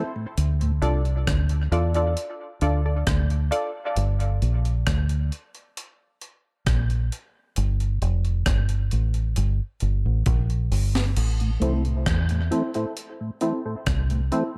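Dub reggae at a slow 67 BPM in straight 4/4, this excerpt from a longer piece feels spacious and meditative, with light reverb and an echo-heavy mix. A deep fingered electric bass sits up front from 0.4 s, dark, round and punchy with a foam-muted tone, moving from Dm to Gm. Alongside it, a sampler-style breakbeat drum kit of kick, snare, hi-hat, rim click and crash sounds compressed and gritty, overdriven and re-recorded in a small room, with a thumpy kick and medium-tuned snare, and a drum fill arrives at 10.3 s. A muted, sawtooth chord stab with a fast pluck and short decay opens the track alongside brief organ tones, treated with chorus, filtering and dub echo. At 11.2 s a filter sweep carries the music onto Am as the mellow tonewheel organ returns with key click and slow rotary speaker, the stabs come back, and a dark, clean hollow-body guitar flickers briefly in the background through dub echo.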